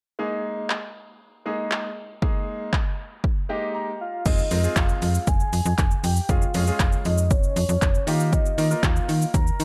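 Bittersweet yet energetic, this dance-pop excerpt moves at 118 BPM in a straight 4/4, its production dark and softly lit by light digital reverb. A clear concert grand piano opens at 0.2 seconds over an Ebsus4 chord, its short-sustained, polished tone pumping against the sidechain, and a deep house drum kit joins at 0.7 seconds with a punchy, overdriven kick, handclaps, hi-hat, shaker and crash cymbal sitting up front. The piano plays a fill from 3.2 seconds, overlapped by a brief break from 3.7 seconds, before the second section arrives at 4.3 seconds, where a snappy FM bass with a metallic attack and decaying notes enters on Fm, also pumping with the sidechain. Just before that, a soft octave-layered synth lead carries the melody with a full, round sound touched by chorus, tremolo, vibrato and tape echo. The harmony moves from Fm through Db/F to Ebadd9 as the piece is cut off mid-flow.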